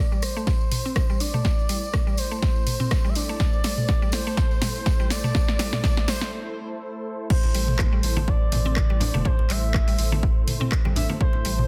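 Afro house at 123 BPM in A minor, driving and hypnotic, cut from a longer piece that sits on an Am7 chord: a smooth sawtooth lead with vibrato and portamento sings over a detuned, mellow pad whose filter sweeps through the build-up, while a woody FM pluck spins arpeggios through delay and a round sine sub bass pumps underneath. A punchy, tape-warm electronic kick and house kit of claps, hats, rim clicks, toms and a soft-clipped snare drive a drum fill with a jingly tambourine until a break at 6.3 seconds. The drop lands at 7.3 seconds, where ringing hand-played congas join in the background, all wrapped in digital ambience and a dense, heavily limited modern master.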